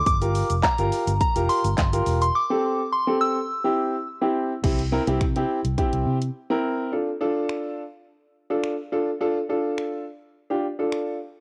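Dance-pop with a confident yet bittersweet mood, carried by a house drum kit whose punchy kick and snare, bright hats, snaps, claps, shaker and crash run almost the full length, giving the piece a cassette-tape grain. A soft, pure FM synth bell with chorus and tape echo sings a high melody over the first 4.3 seconds, while a dark, round, foam-muted electric bass pumps against the kick until 6.3 seconds. A warm, natural baby grand piano, also tape-coloured and pumping, holds the accompaniment through chords moving from Gm7 to Am7 and C before settling on Dm, all in a dry, homespun sound with breaks punctuating the flow.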